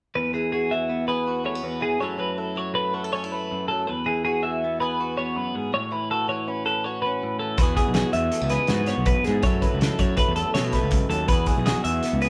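Math rock with a midwest emo lilt, this playful, bright excerpt moves in an odd five-beat metre with a straight feel, cycling through chords like Eadd9, F#m7 and A6 in a moderately reverberant stone room where the band plays live together. A twangy twelve-string electric guitar carries arpeggios up front while a clean, direct-recorded electric guitar supplies compressed accompaniment beneath it from the opening moment. At 7.6 seconds a fuzzy, overdriven picked bass and a loose indie drum kit with a fat snare, tight kick and hi-hat join in.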